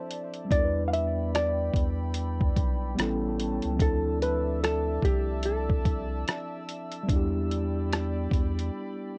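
Melancholic and nostalgic, this short lo-fi hip hop fragment in D dorian drifts at 73 BPM with a swung 16th-note feel, a clean, dark hollow-body jazz guitar carrying the melody over mellow tine electric piano accompaniment, both softened by cassette tape. A warbling, detuned pad hangs above them, coloured by chorus, phaser and its own reverb, while a round, nasal analog bass enters at 0.5 seconds. Up front, a muffled, pitched-down sampler drum kit with a thumpy kick, hi-hat and rim click adds 12-bit grit before the drums and bass drop out for a brief break at 8.7 seconds.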